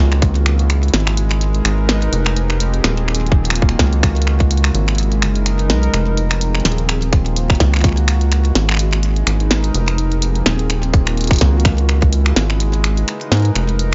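This eerie, intricate IDM excerpt opens with a warbling, detuned pad holding sustained chords, bathed in chorus and its own reverb, over a rubbery, hollow square-wave bass that sits up front. A glitchy drum kit joins almost at once with finger snaps, clicky hats and a tiny snare, all passed through digital delay and carrying a gentle swing on the sixteenths. A tight electronic kick punches in only at moments, briefly at the start, then from 3.3 to 7.9 seconds and again from 10.9 seconds. The nasal bass and the lo-fi, nostalgic pad move through a looping minor progression of Dbm, Abm9 or Abmadd9, Fm9 and Ebm9. The mix is dry and dull at the top, giving the tape-tinged drums a close, muffled intimacy as the fragment cuts off.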